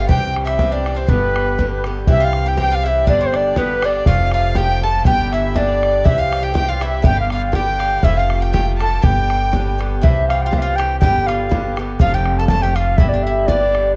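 Celtic folk polka in G mixolydian at 121 BPM in a lightly swung 2/4, bright and lively, cycling through C, G and F chords in this excerpt from a longer piece. A reedy wooden flute with vibrato and a crisp attack carries the melody, joined by a dark, gut-toned bowed fiddle with tape echo that drops out at 9.8 seconds, while a woody picked mandolin sits in the background and a mellow, metallic Irish bouzouki picks out the accompaniment. A thumpy pizzicato upright bass sits up front beside a damped, tight bodhran, all captured in a dry, close 1970s-style studio sound with small room ambience.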